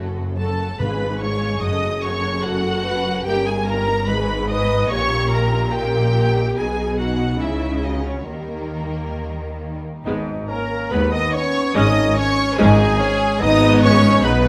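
In a rubato 4/4, this urgent, stormy romantic movement for symphony orchestra, cut from a longer piece, opens with lush, bowed strings: violins carry the melody, a distant second violin line sits in the background, and violas, cellos and double basses fill out the accompaniment and bass alongside mellow, roomy French horn chords. A very quiet, dry timpani stroke sounds at 0.8 s, a punchy solo bassoon joins at 10.1 s, and at 10.5 s faint, pure flutes add a second line while bright, tight trumpets punch out stabs. Close, detailed microphones capture the orchestra within a moderate recital hall reverb.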